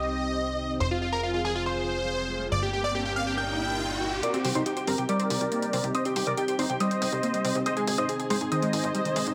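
Set in a lush hall reverb, this bittersweet, emotional uplifting trance fragment places huge, filter-swept supersaw chords up front over a silky, filter-swept analog string pad, a brilliant grand piano second line and a punchy, funky analog bass, with an electronic riser at 1.7 s before a round, filter-swept analog pluck arpeggio and layered electronic hi-hat arrive at 4.2 s to begin the build-up.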